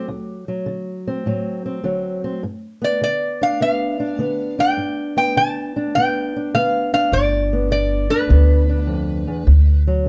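Laid-back and swaggering, this short cut from a longer acoustic country blues piece rolls along with a swung 4/4 feel as a metal-body resonator slide guitar, played up front with fingerpicks, carries the melody in a bright, metallic, nasal voice. Beneath it, an old ladder-braced acoustic guitar fingerpicks the accompaniment with a boxy, woody tone from old strings, moving from D7 to G7 before settling on D. At 7.1 seconds a pizzicato upright bass with gut strings joins in, thumpy and prominent, all wrapped in light reverb and a dark production.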